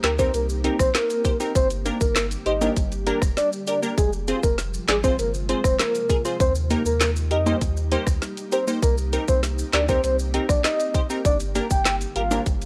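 Dancehall at 99 BPM in a straight 4/4, this sunny, summery fragment of a longer piece moves through Cm7, Fm, Eb and Gm. An up-front island pop drum kit drives it with a tight kick, woody snare, handclaps, rim clicks and hi-hat, while maracas and timbales join at 0.2 s with an acoustic, live-room character. A deep, round sine sub bass anchors the low end as a crisp, wave-folded wavetable chord stab plucks out the harmony with a detuned, decaying bite. Carrying the melody, a soft octave-layered synth lead blends triangle, sawtooth and a sub-octave sine into a full, dark tone colored by chorus, tremolo and vibrato. In the background sits an ethereal, airy pad with slow attack and long release, shaped by ensemble chorus, built-in reverb and sidechain pumping. The whole mix has a dry, gritty hardware sound set in a digital ambience.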